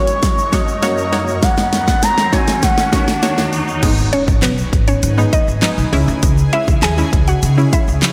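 Set in a moderate concert-hall reverb with a big arena sound, this energetic, bittersweet dance-pop passage in G# minor at 100 BPM opens with a round, horn-like synth lead over punchy, detuned chord stabs, a shimmering, ethereal pad, a faint grainy tube shaker, a background riser and a layered electronic drum kit with a fat snare playing a fill, then drops at 3.8 seconds with an impact and a thumpy, gut-strung pizzicato upright bass pumping up front, while a mellow, mallet-like FM synth pluck carries the melody from 4.1 seconds.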